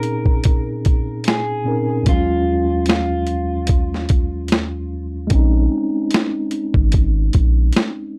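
Nostalgic and hazy, this short lo-fi hip hop fragment in Bb minor sits at a lightly swung 74 BPM over a dry, gritty recording. Upfront, a pitched-down, compressed boom bap sampler kit with a thumpy kick and high-tuned snare supports a mellow tine electric piano heard through its built-in speakers. A dark, slightly broken-up fingered electric guitar carries a low-level melody through tape echo until 4.9 seconds, and a deep, round dub sub bass with transformer saturation enters at 5.3 seconds.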